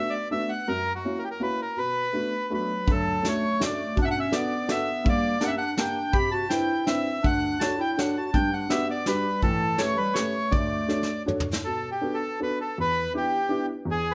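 Bittersweet and whirling, this short piece of a musette waltz sways in three with a loose, rubato feel. A reedy, vintage-toned bandoneon carries the melody up front from the first moment, its band-limited voice sitting over a woody, natural upright piano that supplies the accompaniment throughout. At 2.5 seconds a smooth-topped clarinet in classical style joins with a second line, and a soft brush drum kit enters at 2.9 seconds, with its punchy kick, medium-tuned snare, hi-hat and toms placed up front in a small-room, acoustic sound. The drums close their passage with a fill that ends at 11.6 seconds, after which the opening material returns. The harmony moves through rich seventh and ninth chords, drifting from Bm7 and Dmaj7 through a striking Gm and Cmaj9 before settling back toward Bm7 and Em7. Close, detailed microphones capture the players inside a moderate recital hall reverb.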